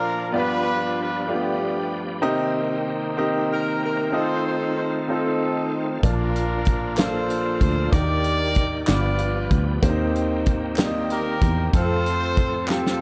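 A tight, roomy horn section carries the melody of this slow, jubilant gospel excerpt in a straight 6/8 at 63 BPM, sitting up front with a soulful jazz-style blend. Beside it, a clear, polished baby grand piano plays the accompaniment with long sustain, while a bright, shouting tonewheel organ holds sustained chords further back, lightly overdriven with chorus vibrato and a fast rotary speaker. The harmony moves from G7 through Cm7 and F7 toward Bbmaj7 and Ebmaj7, then returns through G7 and Cm7/Eb to settle on F. At 6.0 seconds a round, dark, foam-muted fingered electric bass and an acoustic country drum kit with a punchy kick, medium-tuned snare and hi-hat join in, followed at 7.0 seconds by crisp group handclaps in the background. A drum fill at 12.7 seconds closes the passage under a light reverb.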